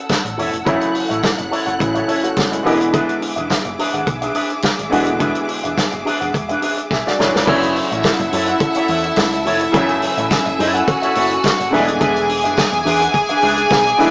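A bright grand piano and a lush, vibrato-rich string section open this sultry, driving disco excerpt, quickly joined by a clean, picked guitar through an envelope filter, a dry, tight soul drum kit, a faint jingly tambourine and a dark, round hollow-body bass, the band sounding live in one reverberant room through a small speaker, until a drum fill at 6.9 seconds ushers in a clear, biting second string line up front at 7.5 seconds over chords moving between F#m7 and E7.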